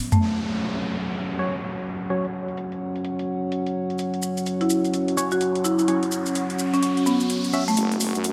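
A dark analog pad opens this bouncy, aggressive bass house excerpt with deep, moody sustained chords under chorus, as an overdriven big-room drum kit with metallic, filtered hats and toms plays a fill and then carries a filter-swept groove with swing on the sixteenths. A warbly, nostalgic tape-like pad drifts in the background from 1.7 s, while a hollow, wave-folded organ stab with phaser and dub echo, grainy maracas, and a woody marimba melody echoing through dub delay fill out the section over downlifter and riser effects. A heavy, saturated wobble bass arrives only at 7.8 s, all set in a lush hall reverb.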